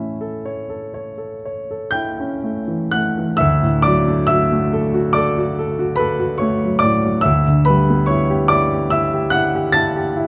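A warm, smooth grand piano with a vintage character sits up front in this romantic nocturne, playing alone across its range from D2 to A6. The mood is nostalgic and dreamy, set in D major and 9/8 at a slow 38-49 BPM counted in dotted quarters, with a freely breathing rubato. The harmony opens on A, settles onto D at 3.4 seconds as a new section begins, and moves to Em7 over a D bass at 7.3 seconds. Close, detailed microphones catch the instrument intimately, while a moderate recital hall reverb adds a gentle halo around each note. This short passage of about ten seconds is cut from a longer piece, so it captures a fleeting moment rather than a complete statement.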